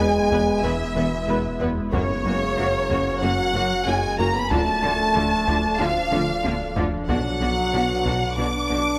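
A brooding, tense hybrid orchestral and electronic film score excerpt, where two vibrato-rich violin sections carry the melody and a second line over lush background violas, mellow French horns, a glassy FM pad with ensemble chorus, a round wave-folded analog bass riff, very quiet bright cellos and distant double basses, a deep sine sub bass, a barely audible boxy piano and very quiet hard-stick taiko drums that enter at 0.3 s and fill from 6.1 s, all moving from E through F# and Dm to Bm in a wet scoring-stage reverb.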